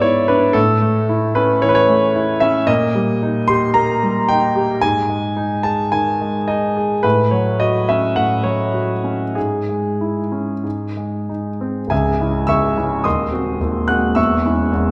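A clear concert grand piano opens alone on a seventh chord, beginning a bittersweet, passionate romantic character piece in four, played with flexible rubato timing and cut from a longer work. The intimate, up-front instrument reaches down into deep bass, its long sustain ringing into a lush recital-hall reverb, with the action noise of the keys audible close by. Around 11.9 seconds the music moves into a new section that closes on a minor chord.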